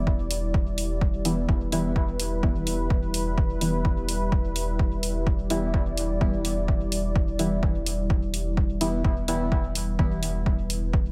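A dark, detuned sawtooth pad with a slow attack and chorus opens this meditative, hazy dub techno piece in E minor, sitting on a round, soft sub bass that holds a low E. Both pulse with sidechain pumping. A punchy electronic kick sits up front from 0.1 seconds, and dusky hi-hats re-recorded in a small room join it at 127 BPM in 4/4 with a light 16th-note swing. At 1.2 seconds, deep, mellow chord stabs enter with a fast attack and a decaying tail. They are shaped by a filter sweep and colored with chorus, phaser and dub echo. The harmony rests on a single E minor chord throughout, tuned to A4 = 436 Hz, with light reverb and a digital ambience wrapping the sound in this short section cut from a longer piece.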